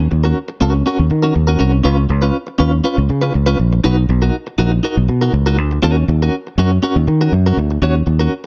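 A straight disco pulse in common time drives this short, danceable fragment cut from a longer piece. A fingered electric bass carries the low end with a growly, punchy, amped tone that sits forward in the mix, and it stops just before the guitar at 8.3 seconds. Over it, a clean electric guitar plays picked, compressed accompaniment with a bright edge and a shimmering tremolo, running until 8.5 seconds. The harmony moves from Ebm7 through Db7 and Bmaj7 before returning to Ebm7, giving the groove a glamorous colour. A dark, warm production and light reverb frame the pair.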